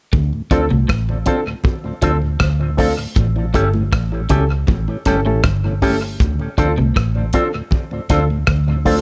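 A straight 79 BPM roots reggae groove in D minor, hypnotic and serious, rides a damped 70s drum kit with tight kick, hi-hat and rim click under dub echo, a dark, foam-muted fingered bass up front, very quiet high-tuned congas, a slightly broken-up guitar riff with ensemble chorus in the background, a key-clicking tonewheel organ on slow rotary entering at 0.3 s, and from 0.5 s a compressed envelope-filter guitar plus barky, lightly overdriven electric piano stabs, all moving from Dm7 to A7 at 3.2 s and back to Dm7 at 6.2 s in this cut from a longer piece.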